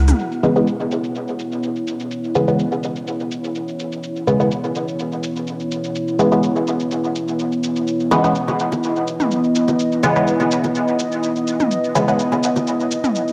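A deep, meditative dub techno excerpt at 125 BPM in C# minor, resting on a single C#m7 chord with a gentle 16th-note swing. A dark, full-bodied ambient pad holds sustained, detuned sawtooth chords up front, while a muted, sub-octave chord stab with a filter pluck, phaser and cassette-tape grit runs through a dub echo alongside a low-passed analog shaker. Overdriven electronic toms and bongos sit in the background, flickering at 0.1 seconds and returning from 8.1 seconds, all inside a wet echo-chamber reverb.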